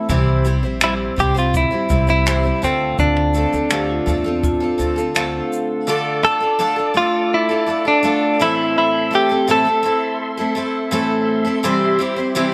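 Acoustic pop in D minor at 83 BPM in a straight 4/4, this short excerpt has a reflective, tender mood under a light reverb. A picked twelve-string acoustic guitar, shimmering and octave-doubled with a full-bodied dreadnought tone, carries the accompaniment up front from start to finish. A clean, direct-recorded electric guitar with a bright, compressed edge enters at 0.8 seconds to play the melody. An upright bass plucked with a woody, growly sound and a jazz brush drum kit heard distant in a small room, with a boomy kick, shaker and finger snaps, support the opening stretch, where a vibraphone with medium hard mallets adds an airy, ringing second line. From 5.9 seconds a reedy tonewheel organ with key click, chorus vibrato and a slow rotary speaker sits in the background holding sustained chords, as the harmony moves from C and Dm7 to Dm, Am and back to C.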